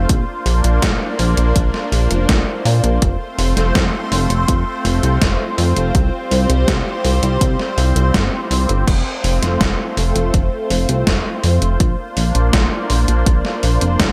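A chorused synth bass sits up front in this dreamy, uplifting synthwave excerpt, its glossy blend of pulse and sawtooth tones shaped by a plucked filter, ring modulation and sidechain pumping as it holds down the low end. Above it, a lush unison pad of detuned sawtooth and square waves sustains bright, thick chords with a slow attack, shimmering through chorus and phaser and breathing with its own sidechain pumping. From 0.1 seconds a punchy, overdriven electronic kick drives a straight 4/4 pulse. An 80s digital drum machine enters at the same moment, its sampler-style snare, hi-hat and crash cymbal carrying gated reverb and overdriven grit, and both drum parts were re-recorded in a small room. The harmony moves from Bbadd9 through F and Csus4, back to F and then Bbadd9, giving the passage a hopeful, floating lift within a light reverb.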